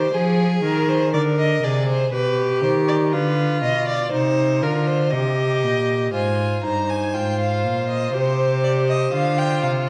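An up-front first violin takes the melody at 6.1 seconds, its rich, smooth, vibrato-laden tone singing between C5 and Bb5 until 9.7 seconds in this solemn, serious fugue for string quartet. Beneath it, a second violin sits more distantly as a supporting line, even and bowed in the Ab4 to Eb5 range. A close, clear viola fills in the accompaniment with its own steady vibrato. The up-front cello anchors the bass from G2 to F3 with a focused sound. At a stately 60 BPM in 4/4, the harmony moves from F minor through G7 over B to C minor and back to F minor. A recital hall reverb lends a spacious bloom to this dark, warm production, cut from a longer baroque-style work.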